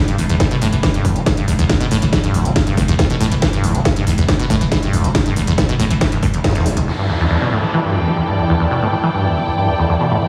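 A squelchy, resonant sawtooth acid bass riff sits up front in this hypnotic, industrial slice of driving peak-time techno at 139 BPM in E minor, pumping against an overdriven electronic kick, a cracking snare with smooth hats, and a growling, buzzy 808-style bass through the opening drop, with a band accent at 6.4 seconds. The kick falls away at 6.5 seconds, and at 6.9 seconds the rest of the drums and the low bass drop out as a dark, woody string section with light vibrato and a background downlifter arrive, joined at 8.0 seconds by a swarming, detuned drone with ring modulation and granular texture. The whole mix is dreamy and soaked in a lush hall reverb, and the acid bass trails a diffuse ambient delay.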